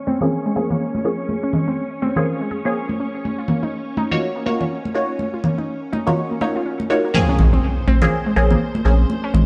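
A warm, late-night deep house excerpt at 123 BPM in Bb minor, with a soft string machine pad, a warbly, lo-fi pluck playing arpeggios through chorus, phaser and tape echo, warm congas, and muted dub chord stabs drenched in lush chorus and analog delay moving from Bbm9 to Ebm9 under a filter sweep, until at 7.1 s a background impact marks the drop and a round, deep analog bass enters up front at 7.4 s.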